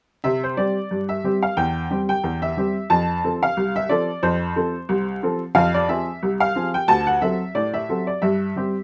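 A solo upright piano opens at 0.2 s, its worn, woody tone sitting up front with a slightly detuned edge and short sustain. This is lively, playful ragtime in C major at 90 BPM in 2/4, with a 56% swing on the sixteenths and the tuning set a little low at A4 = 437 Hz. The harmony moves from C through C/E to F, then darkens to Fm before D7 leads to C/G near the close. The piano covers a range from C2 up to A5 across the whole passage, which runs to 8.8 s and is cut from a longer piece. A light reverb and a layer of vinyl crackle give the sound an aged, old-record character.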